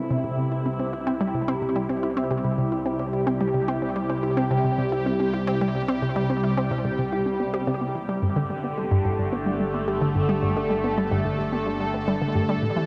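This expansive, cosmic stretch of sequencer-driven space music opens with all four synth parts sounding together at 109 BPM in a straight 4/4, centred on C major. Up front sits a bright, swirling analog pad holding sustained chords, its detuned sawtooth tone colored by phaser, chorus and tremolo. Beneath it, a round analog pluck with a fast attack plays a riff through chorus and tape echo, while a very quiet, dark pluck of gentle, nasal character traces arpeggios, and a filter sweep runs across this arpeggio sound for the whole passage. In the background, a mellow pulse-width-modulated drone supplies the bass, fading in gradually over the full 12.9 seconds. The harmony rests on C before shifting to Gsus2 at 8.2 seconds, and a huge, wet reverb with a long tail bathes the recording. The passage is cut from a longer piece.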